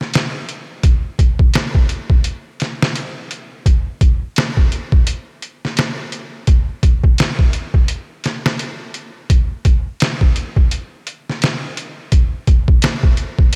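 A gritty, tape-warm sound with little reverb frames this hypnotic, cinematic trip hop excerpt, where a compressed, pitched-down sampler-style drum kit sits up front in a small room ambience, its thumpy kick, medium-tuned snare and hi-hat swinging on the sixteenths through the full 13.6 seconds.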